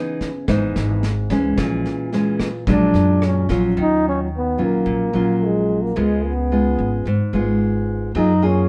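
Wistful and smooth, this bossa nova fragment at 110 BPM rests on an up-front, thumb-plucked nylon-string guitar and woody pizzicato upright bass, with a dark brushed drum kit that drops out at 3.6 s, while a mellow trombone enters at 2.7 s to carry the melody with light vibrato, scooped notes and plate reverb as the music settles into Eb minor from 3.8 s.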